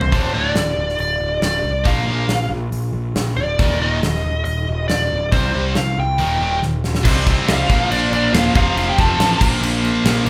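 This hard rock excerpt is driving and menacing, built on a straight 4/4 pulse with a band playing together in one large room. Up front, a nasal lead guitar with a parked wah carries the melody through an overdriven tone, backed by a punchy, fuzzed picked electric bass and a gated 80s drum kit with a fat snare, tight kick and bright cymbals. Behind them, a bright high-gain guitar and an overdriven electric guitar play the riff from the start. After a drum fill, a second double-tracked high-gain guitar joins the riff at 7.0 seconds, along with a very quiet, gritty tonewheel organ holding sustained chords through a slow rotary speaker. A dark octave-fuzz lead guitar adds a brief second line from 7.5 seconds, and both it and the lead melody drop out at 9.4 seconds, leaving the riffing band to carry on.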